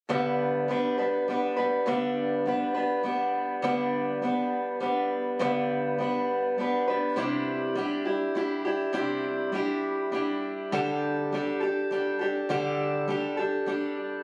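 Set in a straight three-beat lilt, this short fragment of nostalgic, hopeful rock features a lone picked acoustic archtop guitar, playing from 0.1 to 14.2 seconds across a range of G2 to B4 and moving from G to Cadd9 at 7.2 seconds and on to Dsus4. The guitar sits up front with a bright, boxy tone, audible finger squeak and a touch of tape echo. A phone recording made in the room gives it light club reverb.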